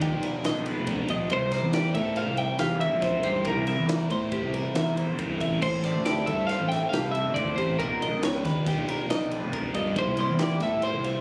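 Captured on a phone in the room, this short cut from a longer math rock and midwest emo piece carries a club's reverb that lends the whole recording a live air. A clean twelve-string electric guitar spins bright, twangy, compressed arpeggios from the start, while a biting overdriven guitar, double-tracked and colored by phaser, plays a riff beneath it. A dark, round fuzz bass, fingered and overdriven, sits up front, and a crisp acoustic fusion kit in a small room adds a high-tuned snare, a punchy kick, ride and crash cymbals in an odd 5/4 metre with a straight feel. At 1.3 s a second clean twelve-string enters with a warm, picked melody placed prominently over the texture. The harmony moves from G7alt/B through C7 and Am7, returning to G7alt/B before settling on C9 at 10.0 s, giving the passage a bright yet wistful mood.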